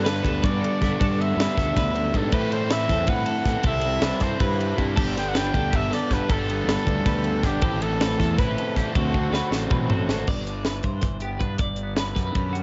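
A crisp fusion drum kit sits up front in this bright, playful math rock and midwest emo excerpt in 7/8, with a high-tuned snare, punchy kick and airy cymbals, all carrying a cassette tape character. Beside it, a double-tracked, overdriven guitar picks a crunchy riff while a growly, fuzz-soaked fingered bass anchors the low end. A distant, roomy trumpet carries the melody with light vibrato and a tape-worn tone, over a background shimmer of tremolo-laden twelve-string arpeggios and a very quiet, twangy clean guitar. The harmony moves through jazzy extended chords such as Gmaj9, Am9 and Cmaj9, then turns on a D7 before a drum fill starting at 9.1 seconds. The trumpet drops out at 9.9 seconds and the riff stops at 10.3 seconds, leaving the remaining parts in a small room to close on Cmaj9/G and Bm7/G in a home-recorded, dulled cassette sound.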